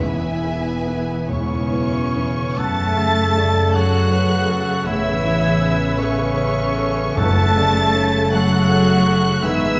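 Heard from further back in a wet scoring-stage reverb, this excerpt from a bittersweet, longing film score drifts in a rubato 6/8 in F# minor at roughly 45-56 BPM, moving from E through F#m and Aadd9 back to F#m. A lush, distant violin section carries the expressive vibrato melody high above a smooth, close second violin line, while violas, very quiet French horn chords, a deep-toned grand piano and rich cello and double bass sections fill out the harmony and low end. A roomy cor anglais enters at 1.3 seconds and a warm clarinet at 2.6 seconds, and a calf-headed timpani sounds briefly at 7.2 seconds.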